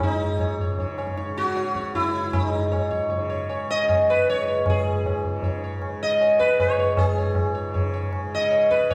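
A wet recital-hall reverb, with about 1.5 seconds of decay, fills this short Hindustani classical passage, cut from a longer performance. The mood is introspective and meditative, in a triple metre with a straight feel. Up front, the sitar carries the melody with a round, plectrum-plucked tone, its buzzing attack haloed by shimmering sympathetic strings. Beneath it, the tanpura holds a low, softly plucked drone, buzzing and glimmering quietly in the background. The low-tuned tabla sits close with a short ring and a small-room dryness of its own. All three play throughout the 8.9 seconds, and the music moves into a new section at 4.7 seconds.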